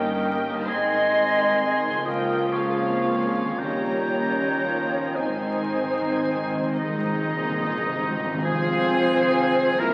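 A rubato 6/8 pulse of 34-46 BPM in dotted quarters carries this tender, lyrical slow romantic orchestral movement in Ab major, cut from a longer piece, where a rich, intimate violin section sings the melody sul tasto with light vibrato over a clear solo oboe, an airy, hollow flute group and a pure, floating second violin section, while a chamber viola section accompanies, a distant, mellow French horn section holds sustained chords, a very quiet, ringing harp plays fingerpicked arpeggios, a warm cello section and a dark, woody double bass section supply the bass, and hard-mallet timpani add an articulate fill from 5.2 to 8.4 s, heard through wet recital hall reverb and the crackle of a very old 78 rpm record.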